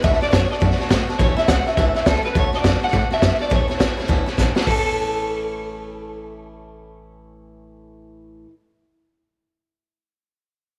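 A swung eighth-note feel drives this rollicking, retro rockabilly excerpt at 207 BPM in 4/4, set in A major with the tuning sitting slightly below standard pitch. A twangy, slightly broken-up electric guitar through a small old amp carries the melody in a lo-fi, bright register, colored by tremolo and tape echo. Beneath it, a picked swing-style acoustic guitar adds boxy accompaniment, while a woody, thumpy upright bass on gut strings anchors the low end with pizzicato notes. A raw garage drum kit sits up front with a punchy kick, high-tuned snare and hi-hat, its sound saturated and gritty with a rolled-off top; it plays a fill at 4.4 seconds and stops at 4.8 seconds, leaving the guitars and bass to carry on. The harmony moves between D and A, and the whole is placed in light reverb with a sense of studio ambience.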